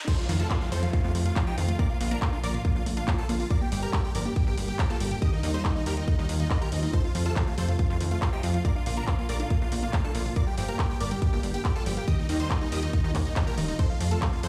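A punchy, up-front electronic kick drives this straight 4/4 uplifting trance drop at 140 BPM in F mixolydian, joined by a house kit of handclaps, bright hats, ride and crash cymbals, while a funky, sawtooth-and-pulse plucky analog bass enters at 0.3 seconds with sidechain pumping. Over the chords F, Bb, Gm and Ebadd9, a huge, detuned supersaw lead carries the euphoric melody through phaser and tape echo, with a catchy square-wave unison lead playing a second line above it and a warbling, wave-folded unison pluck spinning arpeggios in the background. A very quiet, airy pad holds sustained chords with chorus, a noise sweep and downlifter sound until 3.5 seconds, and the soaring excerpt sounds as if played on a big sound system in a bare room, steeped in large studio reverb.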